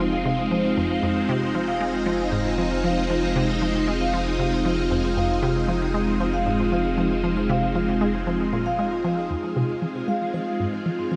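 A steady, straight 4/4 pulse drives this short cut from a longer piece of ambient, sequencer-driven space music, expansive and cosmic in mood. A juicy, squelchy blip pluck repeats a low riff with chorus and delay, while a vibraphone played with medium mallets ripples through ringing, metallic arpeggios trailed by echoes. Alongside them, a swirling, vintage string machine sits up front, holding sustained chords through ensemble chorus and phaser over a single F minor harmony. A round, deep analog bass anchors the low end on one note until 9.3 seconds, where the bass drops out. From 10.0 seconds a bubbling texture of random filter steps enters, barely audible, and a moderate shimmer reverb wraps the whole mix in a spacious haze.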